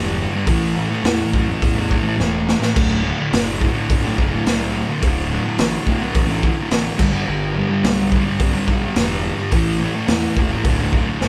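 A double-tracked fuzz guitar riff and an overdriven, picked electric bass open this rowdy, swaggering garage rock excerpt at 106 BPM in a straight 4/4, with a gritty, saturated drum kit joining at 0.5 seconds and a punchy kick, a medium-tuned snare and a pumping small-room sound up front, a drum fill at 2.2 seconds, and chords moving from A5 through D and G before returning to A5 and D5, all captured as a band playing live in one room with light reverb.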